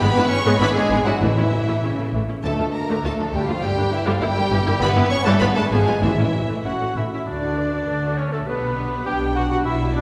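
A reverberant concert-hall sound surrounds this urgent, stormy excerpt from a quick classical-period symphonic movement in 2/4, played with rubato. Rich, expressive violins carry the melody over a second violin line in the background, while focused violas, smooth-topped cellos and soft-edged, distant double basses supply accompaniment and bass. Roomy French horns sustain chords, and articulate hard-mallet timpani in the background strike from 1.2 s and again at 6.0 s. At 6.7 s a pure, silvery flute and a mellow, close-miked cor anglais add second lines, soon joined by a distant clarinet.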